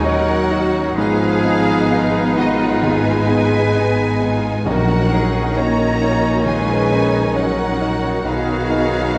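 Sorrowful and bittersweet, this rubato cinematic fragment sets an intense, distant symphonic violin melody over a lush bed of smooth violas, background cellos and expressive double basses, with airy flutes, a clear oboe, a bright clarinet, a very quiet studio violin section, mellow French horn chords and an intimate felt-muted upright piano whose action noise can be heard, while very quiet, dry timpani struck with hard mallets enter at 4.7 seconds, all set in a wet concert-hall reverb with a dark, warm production.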